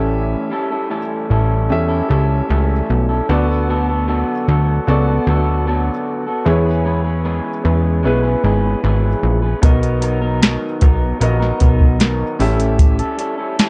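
In a straight 4/4, this sunny, dreamy bedroom-pop fragment sets a slightly broken-up, lo-fi electric guitar with subtle chorus and vibrato beside an intimate, woody upright piano with audible action noise, over a punchy, funky analog bass with a fast plucked attack, until a soft vintage rhythm box with a deep kick, crisp snare and metallic hats arrives up front at 9.6 s with gritty 12-bit sampler texture, the mix sitting in light reverb and a dark, warm production.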